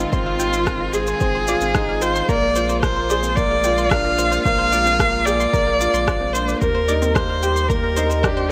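Piano and strings electronica at 111 BPM in 4/4, hypnotic and cinematic, this excerpt from a longer piece moves through Ab6, Bb7 and Ebmaj7 chords. An expressive, boxy solo viola carries the melody up front with vibrato and portamento, over a rich bowed string section holding background chords, a soft felt-muted upright piano riff with digital delay, a bright sawtooth pluck playing chorused arpeggios with a filter sweep, and a round sine sub bass. Deep electronic kick, shaker and rim click, tape-toned and re-recorded in a small room, run from 0.1 to 8.3 seconds, with sidechain pumping on the strings, pluck and bass and light reverb and digital ambience around the mix.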